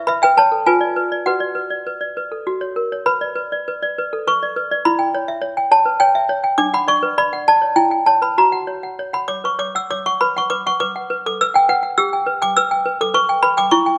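A clanky, bell-like toy piano, slightly out of tune and placed up front, plays alone throughout this wistful, eerie classical lullaby, moving in a loose, rubato 3/4. Its plastic-hammered tone sits in a moderate scoring-stage reverb within a dark production, as the harmony passes through Fdim7 and Bm/F# before settling into a longer second section from 3.1 seconds. That section touches C#m7b5/E, F# and B5 and ends on a G chord at 12.0 seconds, in this passage cut from a longer piece.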